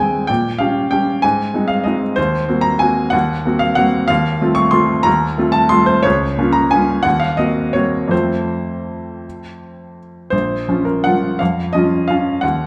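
Classical piano waltz in Bb minor and 3/4, its rubato tempo drifting between 157 and 199 BPM in a bittersweet, nostalgic mood, taken from a longer piece. A solo upright piano, up front and intimate with a woody tone, short sustain and audible action noise, ranges from Bb1 to Db6 through shadowed diminished and half-diminished harmonies before arriving on Bb minor at 10.3 seconds as a new section begins. A wet recital hall reverb surrounds the instrument.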